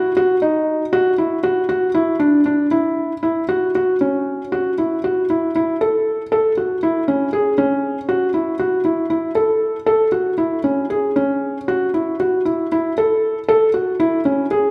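A wet recital-hall reverb surrounds a soft, intimate felt-muted upright piano playing alone and up front in this restless, pensive contemporary instrumental fragment in an uneven 7/8, its mellow, vintage tone staying in a narrow middle register as a brief opening passage gives way to a longer second section at 4.0 seconds that runs until the cut at 14.7 seconds.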